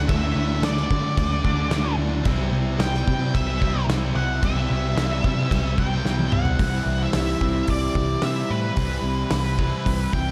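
Heard in a studio ambience, this short cut from a longer shoegaze and dream pop rock piece feels blissful and dreamy at 110 BPM in a straight 4/4. An octave-fuzz lead guitar carries the melody with a warm, distorted, picked tone trailed by digital delay. Beneath it, three guitars play riffs in the background: a lo-fi, compressed, slightly broken-up electric through a small old amp with reverse reverb; a double-tracked, overdriven semi-hollow guitar; and a thick fuzz guitar touched with subtle chorus. Up front, a vintage foam-muted picked bass sounds round and amped, while a loose indie drum kit brings dark cymbals, a medium-tuned snare, a punchy kick, hi-hat, crash and toms. The harmony moves from Dadd9 to C at 2.3 seconds, and a drum fill starting at 6.0 seconds leads into a new passage on Cmaj7 at 6.6 seconds.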